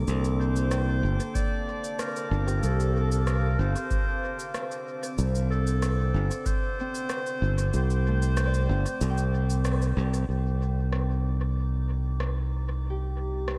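Hazy, spacious ambient dub in which a growly, bright fingered electric bass sits up front beneath a deep, dark detuned pad that fades in over the first 10.3 seconds, a ringing fingerpicked Celtic harp arpeggiating through a low-pass filter and analog delay, a drifting glassy harmonics texture, and tape-toned electronic cabasa and rim click with dub echo, while a clear, classical-style clarinet carries the melody with dub echo and a deep analog kick drum pulses from 1.4 to 6.6 seconds.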